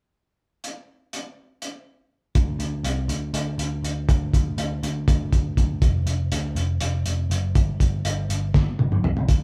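Moving in 7/8 at 243 BPM counted in eighths with a straight feel, this dark, trippy psychedelic rock fragment opens with a cloth-damped drum kit alone at 0.6 seconds: thuddy and muffled, with a fat snare, tight kick, gritty saturation and a rolled-off top, sitting up front in a small, lo-fi room. A picked electric bass enters at 2.4 seconds, round, amped and foam-muted, its dark low notes also placed up front. A drum fill arrives at 8.5 seconds, and the band plays live together in one room with light reverb.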